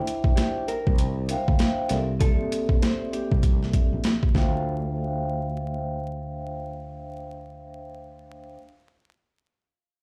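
A small, thumb-plucked nylon-string guitar melody with finger squeak and analog delay sits in the background over ringing soft-mallet vibraphone chords with slow motor vibrato, moving between Dm11 and C13, as this dark, gritty boom-bap hip-hop excerpt in D minor opens at 98 BPM with a swung 16th feel; an overdriven sampler-style drum kit with a thumpy kick joins at 0.1 s and drops out at 4.5 s, a growly fretless electric bass comes in up front at 0.9 s, and large studio reverb and vinyl crackle make the piece sound as if played on a big sound system in a bare room.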